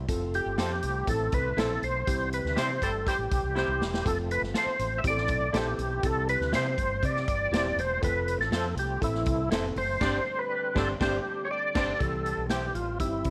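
This short cut from an uptempo 1960s-style soul track sits in light reverb, and the feel is joyful and danceable at 121 BPM in a straight 4/4, in C major. A percussive tonewheel organ leads the melody up front, its lightly overdriven tone carrying chorus vibrato, second-harmonic percussion, tube saturation and a slow rotary speaker. Beneath it, a very quiet second tonewheel organ holds gritty, overdriven sustained chords with key click. A reedy electric piano plays clean accompaniment, while a slightly broken-up electric guitar adds picked stabs in the background. A dark, round fretless bass and a natural, big-room swinging big-band drum kit, with a punchy kick, medium-tuned snare, hi-hat and crash, drive the groove. A tight, clear horn section with octave doubling and tape echo plays a background second line at 2.5 and again at 10.0 seconds, where the band hits accents, and a drum fill arrives at 3.6 seconds.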